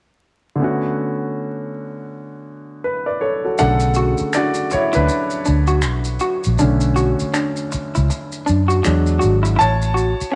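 A warm, up-front grand piano opens this soulful, smooth neo-soul R&B fragment in B minor at 80 BPM, playing alone on a Bm9 chord from 0.6 s before stepping into a solo at 3.6 s. At that point a dark, round, foam-muted vintage electric bass, a slightly broken-up, lo-fi picked electric guitar through a small old amp with spring reverb, and band-limited maracas and finger snaps join on a swung 16th-note feel. Near the close, the harmony moves through E7 to A6, all framed by echo chamber reverb and vinyl crackle.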